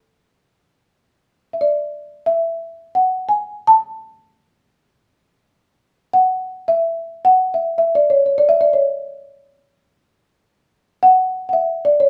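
A folk marimba played with soft mallets carries this short Persian modal piece entirely on its own, its hardwood bars giving a woody, rustic tone that sits up front. Set in free time in dastgah mahur on A, with tuning at A4 = 441 Hz, the music unfolds as a solo line moving between A4 and A5. The mood is warm and festive, and the mellow, round strike of the mallets keeps the sound gentle and airy. A light reverb surrounds the dry attack of the bars, lending a little space around the instrument. Lasting about 12.1 seconds, this fragment is cut from a longer piece.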